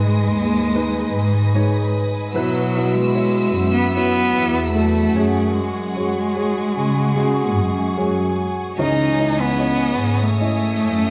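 A large, wet reverb surrounds this short pop excerpt, giving the sense of an ensemble playing together in one generous room. The mood is heartbroken and longing, carried by a solo cello that sings the melody up front with vibrato and portamento, its tone nasal, boxy and deeply expressive. Beneath it, a symphonic cello section holds the bass line with a soft attack, played sul tasto for a pure, floating quality, while a concert grand piano supplies a warm accompaniment with a deep low end. High above, a studio string section sustains lush chords, its clear, focused sound sitting close and shimmering with vibrato. All four parts play throughout the 11.1 seconds, moving through G#m, Bsus4 and F#sus2 before settling on C#madd9 at 8.8 seconds.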